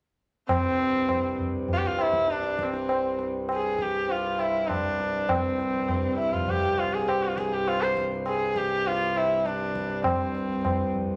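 A straight 4/4 pulse at 100 BPM is set by a low-tuned, close and dry tabla with a short ring, in this meditative, serene Hindustani classical passage in C major, cut from a longer piece. From 0.5 s a single bowed sarangi carries the melody up front with an intimate, warm tone, light vibrato, soft attack, gliding portamento, an airy bow and ringing sympathetic strings, over a reedy, breathing pedal harmonium drone in the low register. A large studio reverb with a 1.4 s tail gives the sound a wet, spacious feel, and the sarangi stops at 10.9 s, just before the drone and tabla end at 11.2 s.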